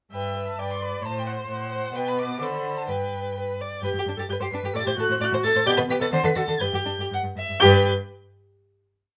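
A dark, woody first violin with vibrato and portamento carries the melody high above the ensemble in this spirited, quick classical-period movement for string quartet in G major, taken at 116-134 BPM in 2/4 with a rubato feel, while a focused second violin drives repeated notes and chords in the rhythm of the tune, a warm viola weaves a counter-melody and doubles the tune at the octave, and a smooth, up-front cello lays down bass on the beats, all in light reverb, as the short piece slows from 5.2 to 7.6 seconds before settling on a final G chord.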